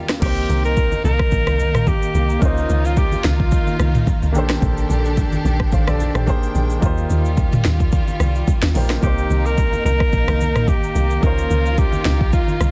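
A swung sixteenth-note amapiano groove rides on an electronic drum kit, with a deep kick, metallic hats and a sharp, softly clipped snare sitting up front, while a round, dark log drum bass and very quiet, close congas fill the low end and the edges. A clear baby grand piano comps over sustained, bowed string chords that pump against the beat, and the music drops in at 0.2 seconds. A vibrato-laden alto saxophone carries the late-night, soulful melody with tape echo, pausing at 4.3 seconds before returning at 9.0, all set in a small room under a dense, heavily limited master.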